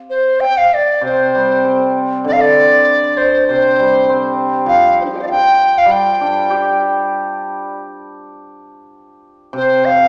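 Chinese traditional chamber music, festive and graceful, flows at a rubato 99 BPM in 2/4, where a close-miked large dizi with a reedy, buzzing bamboo tone and crisp attack carries the melody up front from 0.1 s, a shimmering, ringing hammered dulcimer joins below it in accompaniment at 1.0 s, a new section begins at 2.3 s, and the dizi returns briefly near the end of this excerpt, all within a wet recital-hall reverb.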